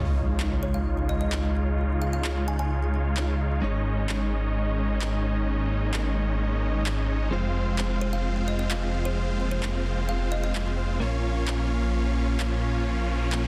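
An impact opens this anthemic, euphoric piece of festival progressive house at 130 BPM in Db major. It lands over huge, detuned supersaw chords that carry the riff up front through a filter sweep and digital delay. Beneath them, a thick, beating saw bass sits saturated and menacing. A bowed string section holds smooth, sul tasto chords in the background, also low-pass filtered, while a direct-recorded clean electric guitar adds very quiet, picked accompaniment. Layered, tape-warm electronic handclaps play through the straight 4/4 from 0.4 s, and a woody, hollow kalimba plays a short plucked melody with delay in two passages, the first beginning at 0.6 s. The harmony moves from Dbadd9 through Absus4 and Fm to Bbm, the background effects return at 12.7 s, and light reverb sits within a dense, heavily limited modern master.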